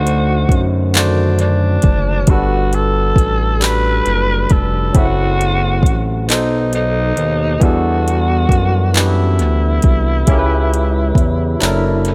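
A raspy, gritty tenor saxophone with vibrato and scooped notes carries the melody through analog delay in this late-night, sultry slow six-eight R&B piece at 45 BPM, over a barky, lightly overdriven tine electric piano moving through chords such as D7b9, Gmaj9 and Em11, a mellow sawtooth synth bass, and an up-front electronic drum kit of soft kick, metallic hi-hat and handclaps, set in an echo-heavy digital ambience.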